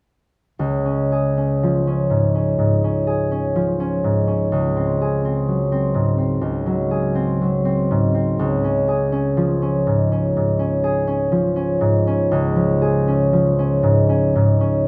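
A concert harp carries this tender, serene classical passage alone, heard up front and close, its thumb-plucked strings sounding warm and ringing from Db2 to Ab4. Cut from a longer piece, the music sits in Db major at a slow 61 BPM in 4/4, with uneven beats and a rubato feel that let the pulse breathe. The harp plays an accompaniment role from 0.6 to 14.9 seconds, moving from Db to Ab7/Db at 4.5 seconds and settling back on Db at 8.4 seconds. Detailed close miking catches the acoustic character of each note, while a moderate scoring stage reverb lends a gentle halo around the sound.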